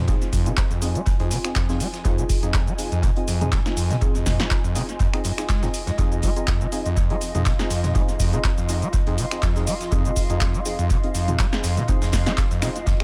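A squelchy, distorted acid bass riff pumps and echoes through this hypnotic, gritty acid house excerpt in F minor at 122 BPM with a 16th-note swing, driven by an up-front deep electronic kick and an analog drum machine with a punchy snare, metallic hats, claps, snaps, cabasa and toms, while soft, detuned chord stabs with chorus and delay outline an Fm7 over a blurred, evolving granular pad, with a very quiet acoustic kit's fat snare and hi-hat underneath and a faint downlifter sweeping through the first 2.0 seconds.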